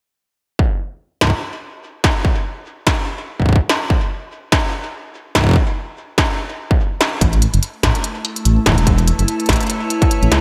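A swung sixteenth-note groove in 4/4 drives this glitchy, wistful IDM fragment, opening at 0.6 seconds with a distorted electronic kick drum, tape-warm and up front. An industrial drum kit joins soon after, its clanging snare and smooth hi-hats carrying a delay and the same roomy, re-recorded character. The drums hold the floor alone over an open, chordless stretch until a dark detuned saw bass arrives at 7.2 seconds, deep, rumbling and saturated, with a beating quality as the harmony settles on A. At 8.0 seconds an icy glass pad fades in with a slow attack, its crystalline, airy chords shimmering through chorus and built-in reverb. The bright 1980s-style digital production, with light reverb and digital ambience, gives the piece a polished sheen, and the recording ends abruptly as a cut from a longer work.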